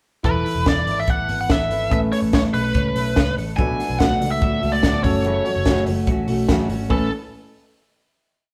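At 0.2 s a breezy, bright jangly indie pop band starts together at 144 BPM in A major: a compact cocktail drum kit drives a punchy, up-front dance-floor beat with off-beat open hats, a vintage muted picked electric bass plays a round, melodic line, a twangy twelve-string electric guitar spins clean arpeggios, and soft chorused electric-piano-like synth keys hold mellow close-voiced chords. At 0.3 s a biting overdriven lead guitar enters with short call-like motifs, before a full-bodied fingerpicked steel-string acoustic guitar joins at 3.6 s and the pre-chorus settles onto a final Aadd9 chord at 6.9 s, the band sounding live in a moderate stone room.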